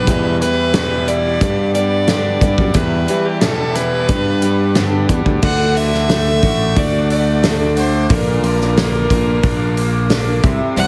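A dark, woody fiddle with light vibrato carries the melody over a bright, full-bodied picked acoustic guitar in the background, a fingered electric bass up front, a raw, overdriven double-tracked garage guitar riff and a very quiet, flute-like tonewheel organ through a slow rotary speaker, with a roomy, distant country drum kit and its punchy kick joining at 0.1 seconds in this warm, open-road folk and heartland rock excerpt at 90 BPM, moving from Em and G to D and Bb under a heavily compressed radio sound.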